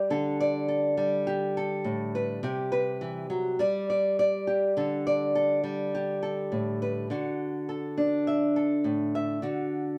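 A relaxed 4/4 pulse at 103 BPM carries a gentle swing on the sixteenths, giving this highlife piece its easy, carefree lilt. A lone nylon-string guitar plays the whole ten-second excerpt, fingerpicked on fresh strings, with a small, intimate body placed up front. It moves in D mixolydian through Dsus4, Cmaj7 and G5 before returning to Dsus4, then settles onto a Dadd9 at 7.1 seconds as a new passage begins. The part ranges from A2 up to E5, and its tone feels warm and unhurried. A moderate studio reverb gives the sound a sense of a large room, as if captured live, and the clip is cut from a longer piece.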